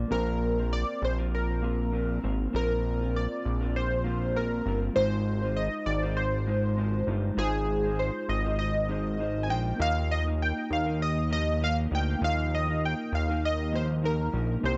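This short indie pop excerpt opens with a fat, detuned sawtooth bass sitting up front, a slightly broken-up picked electric guitar through a small old amp, and a reedy, worn electric piano that stays very quiet and a little out of tune. At 0.1 seconds a round analog keys lead enters on top, carrying the melody with a fast-attack, decaying tone that moves through phaser, chorus and analog delay. The tempo is an unhurried 99 BPM in 4/4 with a light swing on the sixteenths, and the mood is lonely and wistful. Underneath, the harmony drifts from Bbsus2 to Ab6 at 5.0 seconds and then to Ebsus2 at 9.8 seconds, leaving the chords open. The lo-fi, compressed guitar carries a subtle chorus and vibrato, while the thick bass has a plucky filter edge before it sustains. Light reverb and a dark, warm mix with the top end rolled off give the whole piece a hazy, intimate feel.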